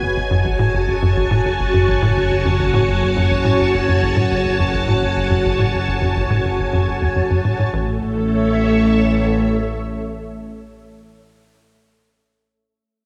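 This cosmic, expansive ambient excerpt moves in a straight 4/4 at 105 BPM in A major, driven by a tight, punchy sequencer bass riff of sawtooth and square waves with a filter pluck, softened by subtle chorus and tape echo until it drops out at 8.0 s. Underneath, an analog drone holds the low end with a slow-attack, wave-folded tone shaped by pulse-width modulation and chorus, and its filter sweeps through the opening section before the drone stops at 9.4 s. Up front, a lush, vintage string machine plays the full ensemble's sustained chords, its sawtooth body thickened by a sub octave and ensemble chorus, carrying through to 10.8 s. The harmony rests on F#madd9 before shifting to A at 7.7 s, where a brief second section begins. A moderate plate reverb with a long tail lends the whole mix a spacious, floating sense of depth.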